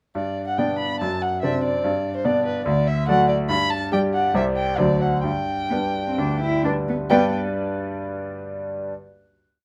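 In a rubato 4/4 at 127-147 BPM, this short, cheerful and spirited classical-period piano trio movement in G major opens with a brilliant, up-front concert grand laying down deep bass and chords on the beats, while a dark, woody violin sings the bowed theme with vibrato and a pure, sul tasto cello adds a floating second line of soft-attack sustained chords, pizzicato accompaniment and answers at phrase ends, all in light reverb, before the piano holds the final chord alone from 7.4 to 8.9 seconds.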